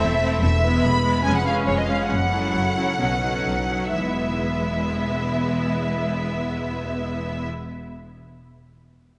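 Steeped in the reverb of a concert hall, this cheerful, graceful snippet of a dramatic romantic orchestral movement flows with rubato and slows through its first 3.9 seconds, as an up-front, lush violin section sings the expressive vibrato melody over a distant, focused second violin line, clear and intense violas, bright ringing harp arpeggios in the background, rich cellos with a smooth top, and even, distant double basses.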